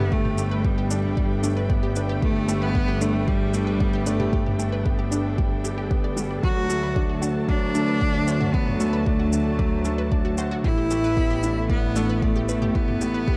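A biting, bright solo cello carries the melody through tape echo in this luminous, hopeful piano and strings electronica piece at 114 BPM in G major, over a felt-muted upright piano riff with audible action noise, a rich chamber string section holding sustained chords and a detuned sawtooth unison pluck playing arpeggios in the background, both pumping with sidechain, a dark, reedy bowed double bass section, and an up-front overdriven electronic kick with layered toms and shaker, all moving through Gadd9, D and Asus2 in a dark, warm production.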